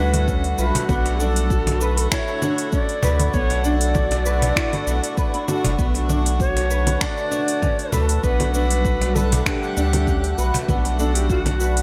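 Meditative and hypnotic, this organic downtempo excerpt sets an airy, tongued cedar flute melody with 12-bit sampler grit and digital delay over a breathing, reedy harmonium and a warbling, lo-fi tape-like pad that sits in the background with chorus and phaser, both with sidechain pumping. A small, dark fingerpicked nylon-string guitar adds arpeggios through ensemble chorus, while a round, dark analog bass sits up front. An afro-pop kit of congas, finger snaps, metallic hi-hat and shaker in gated reverb, a deep electronic kick, and a woody, distant cajon carry the lightly swung groove, all in a bright 1980s-style digital production.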